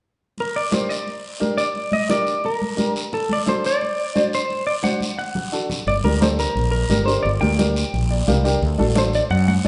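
A twangy electric guitar at the edge of break-up opens this fiery, danceable cumbia in G minor at 175 BPM, carrying the melody with a picked, slightly broken-up tone and spring reverb. It sits up front, with raspy guiro and damped, thin-skinned congas entering alongside it at 0.4 s. A woody upright piano joins almost at once as accompaniment, intimate and natural with audible action noise. The harmony moves from G minor to D7, and a drum fill leads into a new section at 5.9 s, where a round, punchy fretless electric bass enters dark and direct. Later the piano adds a brief fill before the chords settle on D. The band sounds as if playing live in one room, bathed in a wet large-studio reverb with a soft, rolled-off top end, in a short cut from a longer piece.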